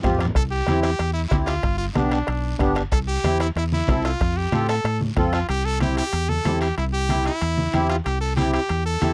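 A short drum fill opens this festive cumbia excerpt, and at 0.4 seconds a brilliant, forceful trumpet takes the solo melody up front, its vibrato and close-miked punch giving it a bright pop edge. Beside it, a reedy, sweet accordion with a light tremolo tuning carries the accompaniment, smooth and prominent in the mix. A round, dark fingered electric bass sits equally forward, punchy and direct, anchoring a simple progression that moves between C, G and F. Underneath, low-tuned congas with hard hands and a thick-skinned, vintage tone stay in the background alongside ringing metal-shell timbales, while a raspy guiro scrapes very quietly and a soft-beatered bombo thumps until 5.5 seconds, when the piece moves into a new section. The dry, close studio sound with little reverb has a 1970s character that keeps the joyful, dance-ready groove immediate.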